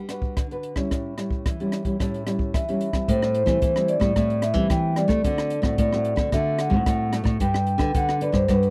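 Nostalgic and bittersweet, this short cut from a longer samba and choro piece moves at 111 BPM in A minor, opening on a fingerpicked nylon-string guitar accompaniment, up front with audible finger squeak, joined almost at once by a compact cocktail drum kit of hi-hat, rim click and a punchy kick. The vibraphone, played with soft mallets and the motor off, enters at 2.5 seconds with a mellow, dark, ringing melody, and a second nylon-string guitar, thumb-plucked on fresh strings, takes up the bass line at 3.1 seconds as the harmony turns through Am7 and D7 toward Gmaj7. The sound is a dry, close 1970s-style studio recording with little reverb.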